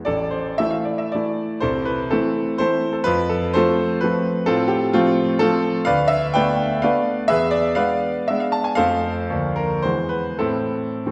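Capricious and wistful, this short classical passage is a romantic triple-time dance in A minor, cut from a longer piece. A solo grand piano carries it alone from start to finish, sitting up front with a clear, smooth, vintage tone and long sustain across a range from A1 to A5. The tempo moves freely with rubato somewhere between 90 and 137 BPM, and dotted rhythms give the 3/4 dance its lilt. The harmony opens on a high A5 and wanders through F, a half-diminished chord over D and E7 before a quick turn through Bb over D and E settles on A minor at 10.4 seconds. A recital hall reverb with a 1.5-second decay surrounds the instrument, lending the passage an airy, reflective glow.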